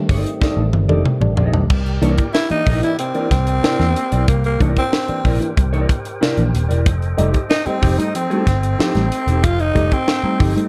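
This short funk clip has a dark, warm production in a small, lightly reverberant room, cut from a longer piece and moving at 93 BPM in a straight 4/4 with a funky, gritty mood. A tight funk drum kit sits up front with a high-tuned snare and tight kick, and it plays a fill from 0.4 to 1.7 seconds. A vintage muted picked electric bass, round and foam-muted, anchors the low end just as prominently. A mellow, fingered electric guitar adds clean accompaniment while a barky reed electric piano punches out stabs, its reedy bite lightly overdriven and colored by phaser, and a fat tonewheel organ holds sustained chords in the background through a slow rotary speaker with audible key click. From 2.3 seconds a growling tenor saxophone takes an up-front, jazz-style solo, raspy with light vibrato, over harmony that moves from a rootless F13 to C9 at 1.7 seconds and F9 at 6.9 seconds.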